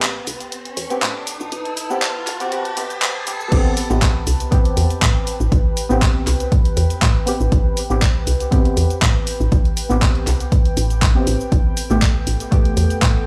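Smooth and hypnotic, this deep house passage in A minor moves at 120 BPM in 4/4 with a light swing on the sixteenths, cut from a longer piece. It opens with a build-up in which an electronic riser climbs alongside a filter sweep on the deep, moody ambient pad, while a woody, round FM bass and a layered deep house kit of hi-hat, shaker, handclaps and crash cymbal are already in place. The drop lands at 3.5 seconds, when the riser stops and a punchy, up-front electronic kick enters, while sidechain pumping is felt in the pad, bass and stabs. Soft, detuned chord stabs with ring modulation, a moving notch, chorus and tape echo arrive at 0.9 seconds, colouring an Am9 harmony that shifts to Gadd9/A near the end. The pad's sawtooth unison and sub octave sound deep and dark around them with chorus, built-in reverb and a long release, and the whole mix carries a dry, gritty hardware character with transformer saturation, cassette tape colour and studio reverb.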